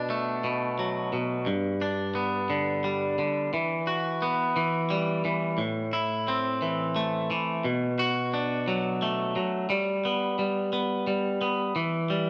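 Rock in a slow 6/8 at 58 BPM counted in dotted quarters, this short excerpt feels melancholic yet cathartic. A lone twangy electric guitar carries everything from 0.0 to 12.3 s, clean, bright and picked, sitting up front with an analog delay trailing its notes across a range from G2 to F#4. The harmony moves through Bm7, G, Emadd9 and Am before returning to Bm7, then shifts to G and Em. From 9.7 s a new section begins and the music builds toward the close at 12.3 s. A moderate concert hall reverb with a 1.7-second decay lends the solo guitar a spacious setting.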